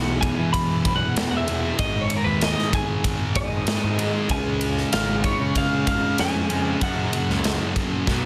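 Quiet-loud alternative rock with an anthemic, cathartic mood, this short excerpt cut from a longer piece moves in a straight 4/4 feel. A bright, clean twelve-string electric guitar carries the melody as a solo throughout, its compressed tone trailed by tape echo. Beneath it, two thick fuzz guitars play a distorted riff from the background, one warm and the other bright. A growly, overdriven picked electric bass holds down the low end, while an up-front acoustic drum kit with a punchy kick, medium-tuned snare and bright ride cymbal drives the groove and ends with a fill at 8.1 seconds. The chords move from E5 through G#5 and C# to F#5, set in light reverb and small room ambience under a dense, heavily limited modern master.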